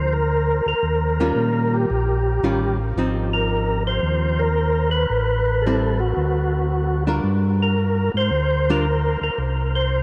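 Bluesy and soulful, this soul jazz organ trio moves at 112 BPM in 4/4 with a swung eighth-note feel, cut from a longer piece. A percussive tonewheel organ carries the melody up front, its lightly overdriven, full tone marked by third harmonic percussion, chorus vibrato and a stopped rotary speaker. Beneath it, a second tonewheel organ plays the bass line with a round, dark, clean sound, shimmering through chorus vibrato and a slow rotary speaker. A miked hollow-body archtop guitar supplies compressed, picked accompaniment set lower in the mix until it drops out at 8.8 seconds. The harmony moves from a rootless Gm7 through Eb9, Ab6, Am7 and Daug back to Gm7, ending on a break with the chords at 9.4 seconds. A huge, wet ambient reverb places the trio in a vast, echoing space.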